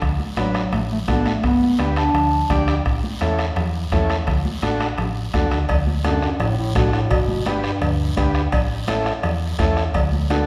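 Cumbia at 169 BPM in D major, festive and danceable, this short excerpt, cut from a longer piece, rides on a round, punchy hollow-body electric bass, a soft-beater bombo, raspy close guiro, high-tuned congas with hard hands and metal-shell timbales with cowbell set back in the mix, while a mellow, overdriven vintage combo organ with light vibrato comps from 0.4 seconds. A dark bass clarinet carries the melody in a classical solo style in two phrases, the second starting at 6.1 seconds, over a D, G, A progression. The whole band sits in a reverberant recital-hall space, and a drum fill arrives at 10.3 seconds.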